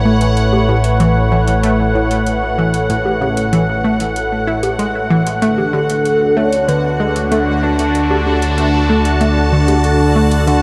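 This expansive, luminous slice of sequencer-driven ambient space music opens on an airy, evolving resonant pad with shimmer reverb over a warbling, vintage analog drone, while a bubbling stepped-filter texture fades in from the background, a bright, round analog pluck riff with delay and electronic hi-hat and bongos with metallic hats arrive almost at once, and from 5.4 s a dark, full, octave-layered synth lead with phaser and vibrato carries the melody, the whole scene set in a wet plate reverb.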